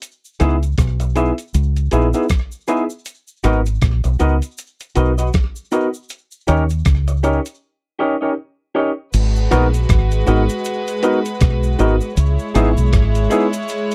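A thumpy, sampler-style drum machine with kick, hi-hat, rim click and crash opens this bittersweet, smooth lovers rock reggae excerpt alongside a background cabasa carrying slapback echo, and from 0.4 seconds a barky, lightly overdriven tine electric piano, a deep, round, foam-muted fingered bass and slightly broken-up, lo-fi electric guitar stabs through a small old amp fill out the dry, close 1970s-style sound, which passes through a break at 7.6 seconds before soft, distant sul tasto strings float in at 9.1 seconds.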